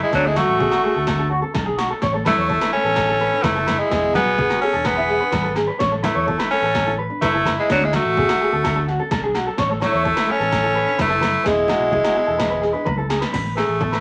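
Highlife guitar band in A major at 127 BPM with a carefree, sunny mood, where a raspy, forceful tenor saxophone carries the melody up front over a clear alto saxophone second line that stops at 12.9 s, twangy, slightly broken-up electric guitar arpeggios, a fingerpicked nylon-string guitar and soft-handed congas and ringing agogo bells in the background, a round fingered electric bass, and 80s electronic pad drums with a punchy kick and gated snare that play a fill from 12.9 s as the D, Aadd9 and E chords resolve to Asus2 at 13.3 s in a wet studio reverb.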